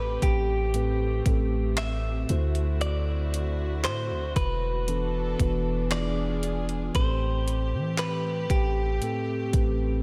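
Lightly reverberant digital ambience frames this longing, late-night contemporary R&B excerpt at 58 BPM in A dorian, where a bright, twangy direct-recorded electric guitar carries the melody through spring reverb and diffuse delay over a mellow tine electric piano with subtle chorus, soft bowed sul tasto strings holding sustained chords, a deep, boomy 808-style bass sitting up front, and a crisp, overdriven 8-bit drum machine entering at 0.2 s with thumpy kick, hi-hat, rim click and handclaps as the chords move from Am9 through D7, E9sus4 and E7b9 back to Am9.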